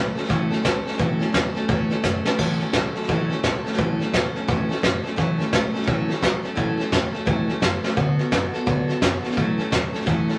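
Rockabilly at a brisk 172 BPM in 4/4 with a 63% swing on the eighth notes, this short excerpt from a longer piece has a rollicking, rowdy mood in A major, tuned slightly flat of standard pitch. A picked steel-string acoustic guitar sits up front as accompaniment, its bright jumbo-bodied tone carrying audible finger squeak as it moves through A6 and D6 chords before returning to A6 at 9.4 seconds. Beneath it, a pizzicato upright bass with gut strings sits in the background, giving a woody, thumpy, dark low end. A brushed drum kit joins at 0.2 seconds with a fat snare, punchy kick, hi-hat and crash cymbal, sounding roomy yet up front in the mix. Drum fills mark the turn into a new section at 2.4 seconds and appear again near 7.8 seconds, and a moderate studio reverb lends the whole performance a lively sense of space.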